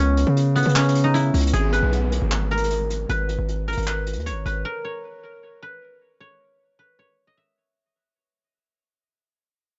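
A silvery, ringing guzheng played with fingerpicks opens this menacing half-time trap fragment up front, darkened by a low-pass filter and tape echo, alongside a heavy, saturated 808-style bass with a noise layer and fast, decaying attack. A vintage brush kit with handclaps and hi-hat sits softly behind them with a rolled-off top, while a background downlifter arrives at 1.5 seconds as the harmony moves from C#m to G#m and a fade-out begins. After the bass and drums drop out around 4.6 seconds and the downlifter ends at 4.7 seconds, the guzheng rings on alone in the small, dark room until 9.1 seconds.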